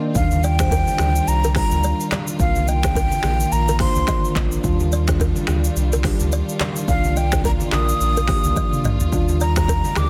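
A dense, heavily limited mix with light reverb and studio ambience carries this sunny, joyful afrobeats excerpt at 107 BPM in Eb major, where a mellow tine electric piano with lush chorus opens on a brief fill beside smooth, bowed strings before a breathy silver flute with delay sings the melody from 0.2 seconds over a deep sine-like sub bass, an up-front afro-pop kit of snaps, handclaps, crisp hats, rim clicks, shaker and toms with soft clipping on the snare and a fill at 8.6 seconds, very quiet low-tuned congas, and a buzzing, woody kalimba riff in the background, all swaying between Ebmaj9 and Cm11.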